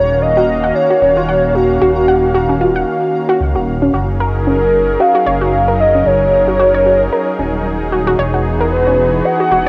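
A warbling, nostalgic lead with tape-worn character and analog delay sings over a smooth vintage pad roughened by 12-bit grit, a deep, rumbling, saturated detuned saw bass and a faint, bright pulsing gated texture tucked in the background until 3.9 s, while a mellow, dusty lo-fi pluck adds echoing arpeggios from 0.4 s in this intricate, playful IDM excerpt at 113 BPM in Gb major, lightly swung on the 16ths, moving from Ebm7 to Gb6 and then Emaj7 within a wet spring reverb and a homespun cassette recording.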